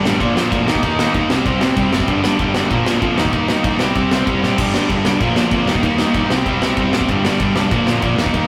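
Punk rock with an urgent, angry drive, taken from a longer piece and running just over 8 seconds in a straight four. A biting overdriven guitar sits up front hammering out the riff, while a second overdriven electric guitar with a bright edge plays the riff in the background and a dark, sludgy, double-tracked distorted guitar lurks very quietly beneath. A growly fuzz bass, picked and overdriven, adds a punchy low end in the background. The big acoustic rock kit is up front, with a punchy kick, a medium-tuned snare and bright ride and crash cymbals, and it throws in a fill at 4.4 seconds. The riff cycles through Bb, Eb, C and Gm, and the whole mix carries the rough, tube-saturated grit of a rehearsal room with a light touch of reverb.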